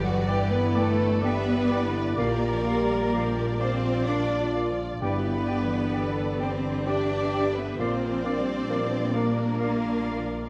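Cinematic and tender, this hopeful rubato passage in 3/4 at 65 BPM, cut from a longer piece, sets a rich, distant violin melody over a smooth second violin line, lush viola, focused cellos and bowed double basses, with a dark grand piano, a mellow French horn section sustaining chords, faint lines from silver flute, warm oboe and a very quiet dark clarinet, and hard-mallet timpani strokes at 0.0 and 5.0 seconds, all moving between G and Bb chords in a moderate scoring stage reverb.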